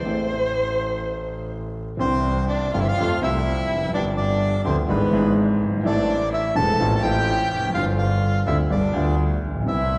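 A playful, passionate tango at 125 BPM in 4/4 with a rubato feel, this cut from a longer piece opens with an expressive, distant bowed violin solo full of vibrato and portamento. A dark, mellow baby grand piano and an up-front, biting, earthy bowed double bass with light vibrato play beneath it throughout. At 2.0 seconds a reedy, shadowy bandoneon enters up front with the melody over chords moving from Cadd9 through Fadd9, G7 and E7/G# back to Am, all set in the wet reverb of a recital hall.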